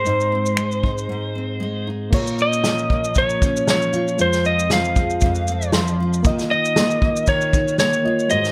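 Acoustic pop with a carefree, heartfelt mood, moving at 117 BPM in 4/4 with a light sixteenth-note swing, this short cut from a longer piece moves through Ab, Bbm, Fm and Ebsus2. An electric slide guitar carries the melody up front, its tone warm and slightly broken-up, compressed, played with fingerpicks and trailed by delay. Beneath it, a double-tracked nylon-string guitar is fingerpicked with a bright, full-bodied, deep classical sound, while a reedy, clean electric piano sits in the background through its built-in speakers, bathed in spring reverb, and steps forward with a fill from 5.5 to 6.2 seconds. The unplugged drum kit enters at 0.1 seconds with bundle sticks, punchy kick, medium-tuned snare, dark cymbals, shaker and finger snaps, sounding distant and roomy in a studio room. A break arrives between 1.1 and 2.1 seconds before the music opens into its second section, and the overall mix stays dry.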